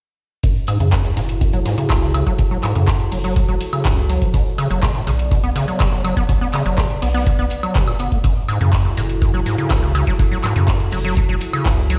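Hypnotic, raw acid house at 123 BPM in F# minor, cut from a longer piece: a squelchy, resonant square-wave acid bass riff with overdrive and analog delay sits up front under a constant filter sweep, while a round, deep analog bass and a tape-warm electronic kick anchor the low end, a booming analog drum machine adds handclaps, woodblock and metallic hats, a very quiet, gritty fusion kit contributes a high-tuned snare and hi-hat, and from 1.0 s a moody sawtooth pad with chorus and phaser sustains F#m7 and Bm7 chords, the pad and basses pumping to the sidechain, all heard through a big sound system in a bare stone room.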